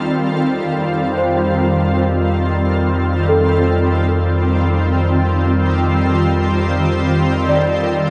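A serene, peaceful ambient fragment opens on a bright, shimmering pad holding sustained chords with chorus, alongside a delicate, bell-like celesta playing delay-touched arpeggios in the background, while a round, deep analog bass enters at 0.1 seconds beneath a single F9 chord, all suspended in a huge, wet reverberant space.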